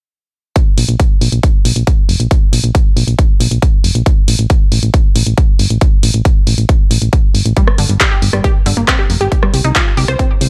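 A dry sound with little reverb frames this short cut from an uplifting trance track, running at 137 BPM in 4/4 in Bb major with a soaring, euphoric mood. A punchy, up-front electronic kick and a layered big-room drum kit of handclaps, hi-hat and rim click start at 0.6 seconds, with sidechain pumping on the hats. A round, dark FM bass with a fast, decaying attack sits forward between F1 and C2, thickened by tube saturation and sidechain pumping. The harmony opens on a Bb5 chord before dropping to an unharmonised stretch from 4.1 seconds. At 7.6 seconds a lush, bright unison pluck enters with detuned, warbling sawtooth arpeggios from D3 to C5, its short filter decay and noise layer carried on a delay and the same pumping motion.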